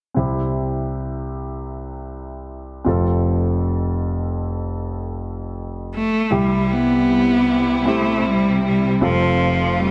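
A hopeful, tender pop instrumental in C major at a slow 78 BPM, this short cut opens with a warm concert grand piano playing up-front accompaniment with a deep bass, moving between C and F chords. At 5.9 s a single bowed cello takes the melody, sitting close and focused with a clear, vibrato-laden tone. At 6.3 s a distant, lush string section joins with rich sustained chords, all set in a dark production with the long bloom of a recital hall.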